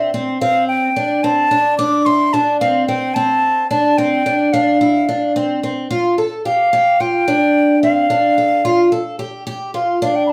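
Progressive instrumental in a driving, tense 5/8 at 219 BPM in D minor, this excerpt sets a pure, straight-toned concert flute with a crisp attack over a picked twelve-string acoustic guitar playing dark, woody, shimmering octave-doubled arpeggios. Both parts sit up front for the full 10.3 seconds, and the harmony moves from Dm7 to Dm as the flute's melody moves into a solo passage at 5.9 s. A short, wet studio reverb places the listener a little further back in the room.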